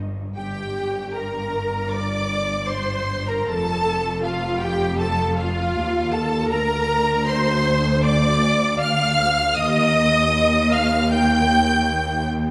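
Classical slow romantic movement for string orchestra, tender and lyrical at 78 BPM with rubato, cut from a longer piece and settling into Bb major from 6.5 s. From the opening, lush bowed cellos and distant, even double basses anchor the bass beneath an up-front, focused first violin melody, a background second violin line and intense, smooth-topped violas, all with vibrato and set in a wet concert hall reverb as the harmony moves from Gm through F9 and Bb/D to Ebadd9.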